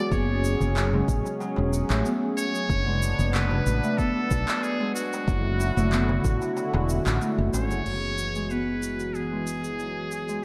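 Mystical and meditative, this organic downtempo passage moves at 93 BPM in 4/4 with a light sixteenth-note swing, cut from a longer piece and bathed in a dreamy plate reverb. A muted trumpet carries the melody with a buzzy, thin tone, vibrato and scooped notes, its line trailed by analog delay. Beneath it a smooth sawtooth pad holds detuned chords with chorus, tremolo and sidechain pumping, while a fingerpicked Celtic harp rings out arpeggios through a low-pass filter and delay. A growly, round fretless bass sits up front, pumping with the sidechain, and the groove comes from an overdriven deep kick that drops out at 6.4 seconds, an overdriven electronic kit with crash, handclaps and shaker, and a crisp metal-shell darbuka in the background until 7.7 seconds. The harmony drifts from F#m through Bm7/F# and Dmaj9/F# to E/F#, and at 7.9 seconds a new section opens as a filter sweep moves across the pad.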